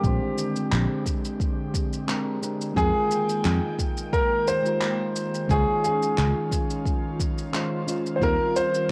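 Cassette tape colours this short home-recorded cut from a longer piece, with light reverb and a digital ambience wrapping a blissful, sunny sunset chillout groove at 88 BPM in 4/4, swung lightly on the sixteenths. A warm, up-front grand piano carries the melody between G4 and C5, softened by tape and analog delay, while a clean, picked electric guitar plays accompaniment alongside it through a low-pass filter that sweeps across the whole 8.9 seconds. An airy, breathy pad with a slow attack, long release, chorus and a detuned, gritty 12-bit sampler edge holds sustained chords over a Bb13, Fm11, Dbmaj9 and Eb69 progression. A fingered electric bass sits warm and direct between Bb1 and F2, joined by a deep, overdriven electronic kick re-recorded in a small room. Layered, overdriven shaker and handclaps ride along, and the bass and kick drop out at 8.4 seconds, leaving the piano, guitar, pad and shaker and handclaps to close the passage.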